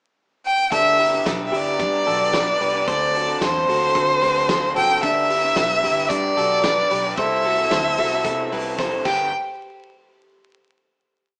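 Jangly indie pop in G major at 112 BPM, this short, complete piece carries a nostalgic, youthful mood, its band playing live together in a wet stone room, captured with vinyl crackle and a small-speaker sound. A clear, focused violin enters at 0.5 s during the pickup bar and sits close and up front, one bowed player with vibrato shaping a motif-based melody in sentence-like phrases. From 0.7 s the band joins: a dark, lo-fi garage guitar strums open chord shapes through overdrive, while a bright, twangy clean electric guitar, recorded direct and compressed, rings out a picked arpeggio figure doubled in thirds with spring reverb. Underneath, a vintage foam-muted fingered bass plays a round, punchy, melodic line with slides, and a loose, distant drum kit with dark cymbals, a fat snare and a tight kick drives a dance-floor beat with off-beat open hats. The verse moves through G, D7 and C6 before a drum fill at 8.8 s leads into a final hit that rings on from 9.3 s.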